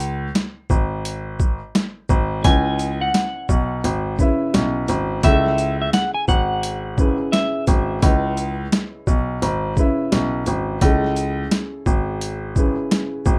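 A dry, rough home-demo sound frames this moody, dark boom-bap hip-hop excerpt in C# minor, moving at 86 BPM in 4/4 with a swung sixteenth-note feel. It opens on a break of gritty, overdriven sampler-style drums, pitched down and compressed, with a thumpy kick, high-tuned snare, hi-hat and shaker sitting up front, while a concert grand piano holds the low end as bass, intimate and close with audible action noise and a short sustain. At 2.4 seconds a boxy, woody upright piano enters as accompaniment, its tone filtered and softened by cassette-tape colour as the chords move from C#m7 to F#m7. Also at 2.4 seconds, a fingered electric guitar at the edge of break-up carries a brief high melody until 7.6 seconds, shaped by high- and low-pass filtering. The harmony then returns to C#m7 and settles on Amaj9, with drums, bass piano and mellow upright continuing to the cut at 13.4 seconds.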